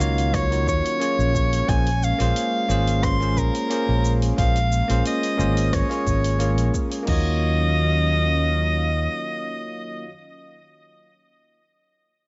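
A bright soprano saxophone leads this relaxed sunset chillout excerpt, carrying a smooth, pop-style solo melody up front with vibrato and a trail of digital delay. A bell-like tine electric piano plays clean, direct accompaniment, also touched with delay, while an airy, breathy pad holds soft, detuned chords with a slow attack and long release, its chorus keeping it mellow in the background. A round, punchy fretless electric bass sits up front with an amped, dark tone and analog chorus, grounding the minor ninth harmony until 9.1 seconds. A layered deep house kit adds cabasa, crash, shadowy hi-hats and rim clicks, joined at 0.3 seconds by a punchy electronic kick kept in the background, both re-recorded in a small room. The drums drop away at 7.2 seconds, leaving the saxophone, piano, pad and bass to float in a digital ambience.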